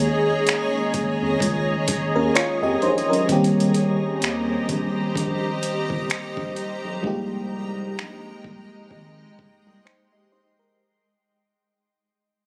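Swung sixteenths over a 4/4 groove anchor this slice of contemporary R&B, where a gritty, sampler-style drum kit with a thumpy kick, hi-hat and finger snaps sits up front from 0.5 s. A mellow FM electric piano with tremolo and a noise layer carries the accompaniment, while a blurred, detuned granular cloud pad pumps under sidechain and a round, wave-folded analog bass holds the low end through Eb7sus4, Cm7 and Fm11. The mood is sensual and longing, and the passage begins fading out at 3.3 s, heard through the roomy haze of a phone recording in a club-like space.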